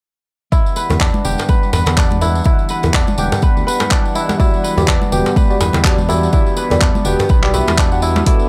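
Swung sixteenths drive this driving, spiritual afro house excerpt. An up-front, tape-warm electronic kick and an overdriven deep house kit of handclaps and hi-hat, re-recorded in a small room, lead the rhythm, joined by a jingly tambourine, close, dry congas in the background and a tight, cracking djembe with metal rattles, over a smooth sawtooth synth bass with sidechain pumping. Above the sustained Em7 harmony, a ringing, fingerpicked kora plays arpeggios through analog delay, a detuned, bright analog pad holds chorused chords in the background, and a dark, soft chord stab with a filter pluck enters at 4.4 seconds, giving the dry, gritty hardware recording its lift.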